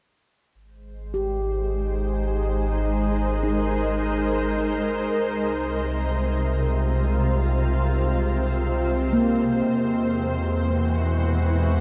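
Ringing stainless-steel handpan arpeggios with tape echo float over an ethereal, shimmering pad of sustained chords, a deep, round sub bass that enters first at 0.5 seconds, and a nasal, string-like bowed drone with vibrato, moving from Abmaj7 to C7sus4 to E in a serene, peaceful ambient passage bathed in a long shimmer reverb, with the handpan falling away at 10.2 seconds as the other parts sustain to the close of this cut from a longer piece.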